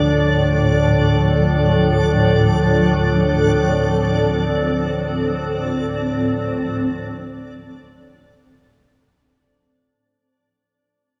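A blurred, cloudy granular pad sits up front in this dark ambient drone fragment, holding sustained chords in free time, with a slow attack and long release that let its grains keep evolving. Beneath it, a deep, rumbling drone supplies an ominous low foundation, built from triangle and sawtooth tones that bloom slowly and linger. Higher up, a reversed, detuned texture adds a bright, swelling shimmer, with a soft attack and a dreamy granular quality. Each of the three parts carries its own built-in reverb, and the mix is soaked in a lush hall reverb that keeps the mood brooding. Cut from a longer piece, the passage begins fading out at 3.6 seconds and is gone by 9.3 seconds.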